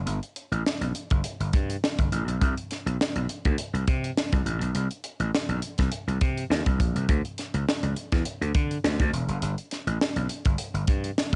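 This short excerpt has a dry, close home-cassette sound with a dulled top end, so the band feels intimate and a little lo-fi despite its polished intentions. It's breezy, urban 1980s jazz-funk pop in 4/4 with a light swing on the sixteenths. A gritty, overdriven slap bass carries the groove from the first moment, its growly, punchy electric tone sitting up front and ranging from deep lows into its middle range. A crisp acoustic fusion kit joins at 0.1 seconds, with an airy studio-room character, a tight kick, a high-tuned snare and hi-hat. Both parts sit forward in the mix for the whole passage, making a lean, bass-and-drums pocket that ends at 11.4 seconds.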